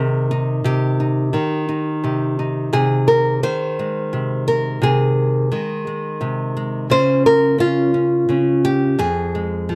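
Intimate and reflective, this brief folk passage is cut from a longer piece and lasts about 9.8 seconds. A lone nylon-string guitar, fingerpicked and sitting up front, carries the whole performance with a small, warm, acoustic tone. The playing moves freely in a rubato 6/8, drifting from Cm through Ab/C to a Dbmaj7#11 around 6.9 seconds before settling on Fm. The guitar ranges from a low F2 up to C5, and the instrument is tuned slightly under standard pitch, with A4 at 437 Hz. Close, detailed microphones and a touch of light reverb give it a near, personal presence.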